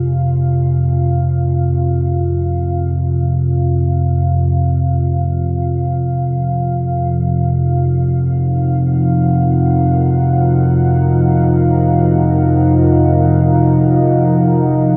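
Floating in free time, this desolate, unsettling dark ambient drone sets an ominous, rumbling low drone with a detuned, wave-folded edge up front, alongside a moody, chorused sawtooth pad that fades in across the full 15 seconds and moves from Fm to Ebm/F at 5.6 s, the whole mix hanging inside a huge ambient reverb.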